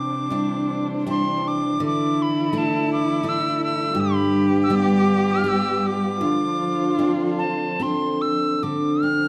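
Longing and mournful, this Celtic slow air in a free, rubato 3/4 sets a reedy, chiffy metal whistle up front on the melody over a rich, expressive cello second line with portamento that stops at 8.2 seconds, picked steel-string acoustic guitar with finger squeaks, and a dark, woody sul tasto string section sustaining lush chords in the background, all within a wet recital-hall reverb, as the harmony moves from Cadd9 through Dsus2 and G7 to Dm7 in this short cut from a longer piece.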